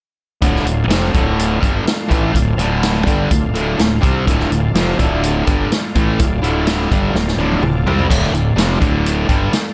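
A straight, driving 4/4 groove from a vintage acoustic drum kit with a punchy kick, dark cymbals and a rolled-off top propels this brooding classic rock fragment, with a drum fill between 7.1 and 8.1 seconds. Up front, a bright, double-tracked distorted guitar plays a picked riff over a round, fuzzy fingered bass, the whole passage resting on a single D minor chord. Far beneath them, a thick, gritty tonewheel organ sustains chords through a slow rotary speaker, all set in a small room.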